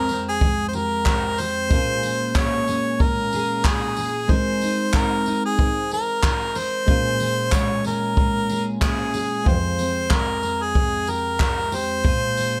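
A lightly swung sixteenth-note groove in 4/4 carries this easy-going, carefree acoustic pop fragment. A distant, roomy brush kit with a boomy kick, handclaps and tambourine sets the pulse. Up front, a clear, close-miked harmonica sings the melody with light vibrato and scooped notes over a full-bodied, double-tracked jumbo steel-string guitar and a dark, woody upright piano that sits very low in the mix, its action noise audible. A separate jingly, dry tambourine slips in very softly from 7.5 to 9.0 seconds, and light reverb lends a gentle sense of space.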